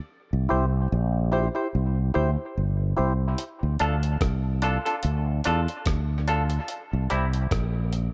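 Swung sixteenths at 73 BPM in 4/4 drive this deep, spacious dub reggae excerpt in D minor, which opens on a break where a punchy fretless electric bass meets a hollow, wave-folded organ stab soaked in chorus, phaser and tape echo until 3.1 seconds, before a gritty, compressed sampler-style drum kit with thumpy kick, hi-hat and rim click arrives at 3.4 seconds and a clean, picked semi-hollow electric guitar with spring reverb and tape echo joins at 3.8 seconds, all of it sitting in a light digital ambience with a rolled-off top as the chords move from C to Dm.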